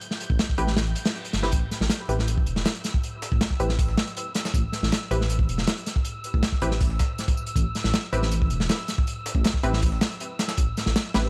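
Drum and bass with a jungle flavour, nostalgic and atmospheric, in a short cut from a longer piece that sits on an Am9 chord. An up-front, crunchy breakbeat kit with a saturated, rolled-off top drives over a dark detuned saw bass that rumbles and beats, while muted dub chord stabs carry chorus and dub echo and a breathy, wind-like tuned noise texture drifts in the background with its own reverb. A reverse cymbal sounds at 0.9 seconds before a second, compressed sampler-style kit of high-passed hi-hat, snare and tambourine joins behind at 1.5 seconds, all in a gritty, dry small-room recording dusted with vinyl crackle.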